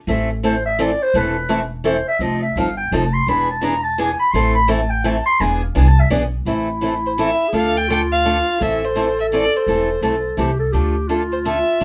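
Recorded live in one room with light reverb, this fiery, swinging fragment of acoustic string swing in A minor moves at 169 BPM in 3/4, with a distant, raspy, growling clarinet soloing with scooped notes until 6.5 seconds over bright picked steel-string acoustic guitar and a woody, thumpy pizzicato upright bass, until a smooth, bowed violin with vibrato enters up front at 7.1 seconds to carry the melody while the clarinet continues as a second line.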